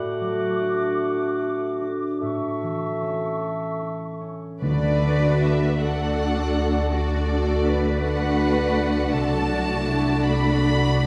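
Classical, a slow romantic movement for symphony orchestra in D major, moving in a rubato 12/8 at 48-56 BPM with a lyrical, tender mood in this short passage cut from a longer piece. It opens with woodwinds over concert harp arpeggios: a hollow, airy flute section and a clear, distant oboe share a second line, a soft-attacked solo clarinet sustains F#4 until 3.4 s, and a mellow, close-miked bassoon holds A3 underneath. At 4.6 s the strings take over, as a lush violin section with expressive vibrato carries the melody between D5 and B5 while a second, smooth and even violin line sits beneath it. Violas fill in the accompaniment, cellos and a focused, up-front double bass section anchor the low end, and very quiet timpani touch D3 briefly before 5.8 s. The harp rings through the whole span, the harmony moves from D/A to A and back to D before turning to D7/C, and a scoring-stage reverb places the orchestra further back in a generous, resonant room.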